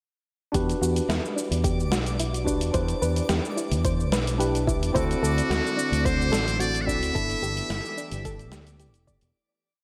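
A smooth, relaxed sunset chillout groove in E minor at 109 BPM opens at 0.5 s with bright tine electric piano playing rootless held chords with syncopated pushes, a soft round pluck running an eight-step arpeggiated sequence, a dark fretless electric bass riff up front, a gritty, dusty sampler-style kit laying down a light lounge beat of closed hat, shaker and snare, and a deep, overdriven electronic kick, while from 0.9 s a twinkling granular texture holds a sparkling high note in the background. A buzzy muted trumpet enters at 5.0 s with a motif-based solo of scooped notes and light vibrato, and a silky, warbling string machine pad joins at 5.7 s over an Em9, Cmaj7/E, D7, G69 progression as the whole piece fades out in a big arena-like reverb.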